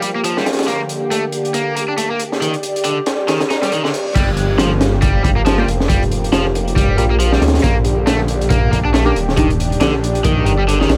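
Funky, gritty breakbeat cut from a longer piece, where a crunchy, saturated drum kit with a punchy kick and high-tuned snare drives beneath a lush, chorused unison pad and a bright, overdriven guitar riff coloured by sampler grit and tape echo, until a faint reverse cymbal leads into the drop at 4.2 seconds, bringing in a swirling, phased, detuned saw bass up front while a muted, filtered dub chord stab sits in the background from 5.6 to 9.5 seconds.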